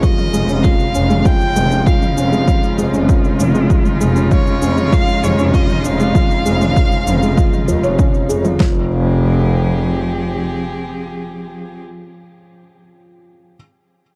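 Cinematic and hypnotic, this piano and strings electronica passage opens on a drop, with an overdriven deep house kit up front, its punchy kick and fat snare layered with electronic shaker and toms, while a felt-muted upright piano plays a soft, intimate riff through a delay, its thick felt and action noise audible. A distant solo violin carries a focused, vibrato-laden melody until 8.0 seconds over a rich, close string quartet sustaining chords with portamento and sidechain pumping, and a nasal, earthy bowed double bass section, tube-saturated and pumping too, enters at 0.3 seconds. The drums stop near 8.7 seconds as the harmony moves to F minor, leaving the strings and piano to linger in a dark studio reverb before the piano closes this cut from a longer piece at 13.6 seconds.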